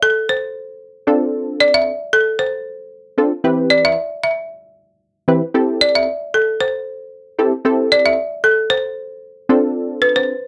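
A folk marimba struck with hard mallets carries the melody from the start, its woody, rustic tone sitting up front with a slapback echo in this driving, energetic pop excerpt at 114 BPM in A minor. From 1.1 seconds a punchy chord stab joins in accompaniment, its nasal, detuned sawtooth sound thickened by chorus and shaped by a quick filter pluck, moving through F6, Cmaj7/E and Am7 before returning to F6. The whole has the dry, close feel of a 1970s-style studio recording with light reverb.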